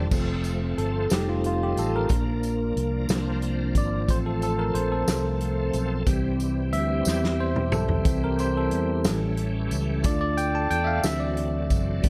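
A barky tine electric piano opens this slow, jubilant gospel excerpt in F major, playing up front alongside a shouting tonewheel organ turning through a slow rotary speaker with chorus vibrato and key click, and a round, punchy fingered electric bass. The piece moves at 60 BPM in a soulful 6/8. From 0.1 seconds a natural country drum kit with a punchy kick and medium-tuned snare joins from a small room, while a jingly tambourine sits low in the mix and a very quiet, dark French horn section holds smooth, loose sustained chords beneath. The bell-like electric piano carries a solo across the passage as the harmony moves from F through F7, Bb and C9sus4 to F/A and C, then on to A7, Dm and D7. A drum fill arrives at 7.1 seconds, and light reverb with studio ambience surrounds the whole band.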